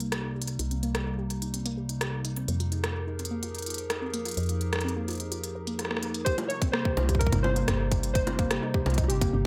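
This melancholic, intricate IDM piece in C minor opens with a tape-like pad holding slow-blooming, chorused chords over Cm7 and Fm11. A dusty, detuned pluck spins arpeggios through phaser and delay as a filter sweeps across it. Beneath them, a soft, round FM bass with a woody tone sits dark and low. An organic electronic kit of bongos, crisp hi-hat and rim click drives a straight 127 BPM in 4/4, overdriven and up front in a large-room sound. At 6.2 seconds a nostalgic lo-fi synth keys part enters with a warbling melody through chorus and delay, and a tight, overdriven electronic kick joins at 6.3 seconds as the harmony returns to Cm7, all framed by light reverb in a passage cut from a longer piece.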